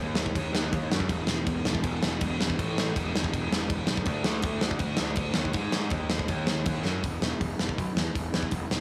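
A growly, overdriven picked electric bass with a fuzzy, bright edge kicks off this energetic, rowdy punk rock passage at 162 BPM in E major, joined at 0.2 seconds by a big, up-front acoustic rock drum kit with a tight kick, medium-tuned snare, hi-hat and crash cymbal, its mid-forward sound and rolled-off top sitting in a small room with light reverb, before a drum fill at 6.8 seconds leads into a new section at 7.0 seconds.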